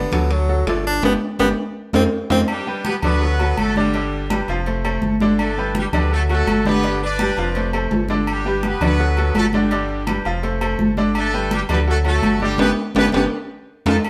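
Festive and joyful, this salsa excerpt at 166 BPM in G major opens with a close-miked, vibrato-laden tenor saxophone that hands the melody at 2.5 seconds to a bright, octave-doubled horn section, over a brilliant grand piano with audible action noise, a round, dark analog bass with ring-modulated sawtooth tones, thick-skinned congas, and ringing metal-shell timbales and agogo bells, the band playing live in a wet stone room with accents and drum fills closing each section.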